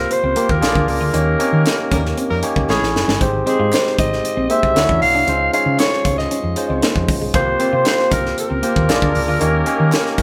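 A growling alto saxophone leads this polished 1980s jazz-funk pop excerpt, its raspy, breathy line carrying vibrato and a touch of delay over a barky, lightly overdriven tine electric piano that sits up front. A round, dark hollow-body short-scale bass, fingered and amped, anchors the groove at 116 BPM in a straight 4/4 in Ab major, while a crisp fusion drum kit with a high-tuned snare and punchy kick enters at 0.1 s alongside a slightly broken-up electric guitar riff tucked into the background. The band hits accents together from 1.1 to 3.2 s and again near the close, with a warm, jazz-style horn section adding a second line from 1.9 to 2.9 s and a drum fill leading into the next phrase. Very quiet group handclaps with a hollow, small-room quality join at 3.7 s, and the harmony glides through sliding major-seventh and ninth chords before cycling back to C7sus4, Bb7 and Eb7. The mood is urban and breezy, with the band heard playing live in one room under moderate studio reverb.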